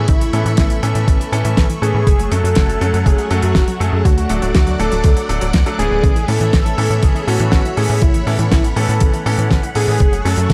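The recording sounds dark and warm, with light reverb and a small room ambience around a romantic, danceable italo disco groove at 121 BPM in a straight 4/4. A thumpy, sampler-style electronic kick sits loudest in the mix, joined just after the start at 0.1 seconds by a damped 70s kit whose dry, fat snare and hi-hat round out the beat. Underneath, a tight sequencer bass drives forward with a punchy, mellow filter pluck that decays quickly, moving through the Aadd9, F#m and D changes. A thick, bold unison lead carries the melody with a detuned sawtooth edge, a sub octave and delay, while a swirling vintage string machine holds sustained chords through ensemble chorus and phaser. Filling in the middle, a bright baby grand piano adds brilliant, intimate stabs with audible action noise, and a very quiet detuned pluck with a ring-modulated, noisy sheen plays arpeggios throughout this 10.5-second excerpt cut from a longer piece.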